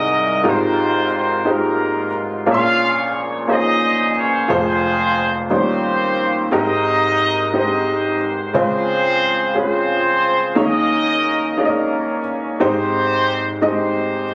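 Captured on a phone in a club, this compressed recording carries the room's ambience and a moderate studio reverb around a soulful, reverent gospel passage in 6/8 at 59 BPM in Ab major, cut from a longer piece. A mellow, vintage-toned horn section sings the melody up front with light vibrato and octave doubling, while a woody, slightly detuned upright piano accompanies throughout the 14.3 seconds, its action noise audible and intimate. The harmony moves from Fm11/Ab through Bbm9, Eb13 and Dbmaj7 before settling on Abmaj7 at 12.6 seconds.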